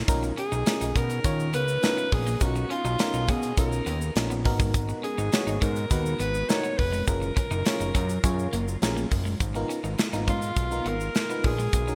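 A clear alto saxophone carries the jazz-inflected melody through digital delay from 0.4 seconds in this slick, danceable early-eighties boogie funk excerpt at 103 BPM in G# dorian. It rides over an up-front acoustic drum kit with gated reverb and a tight kick, a fat, saturated analog bass with filter sweeps, a glassy bell-like FM electric piano accompaniment, a slightly broken-up picked guitar riff with lush chorus in the background, a very quiet swirling phased string machine, and a grainy tube shaker. Everything is set in bright 1980s-style digital production with plate reverb as the chords move from Bmaj9#11 through G#m7 and F#maj7 to G#m69.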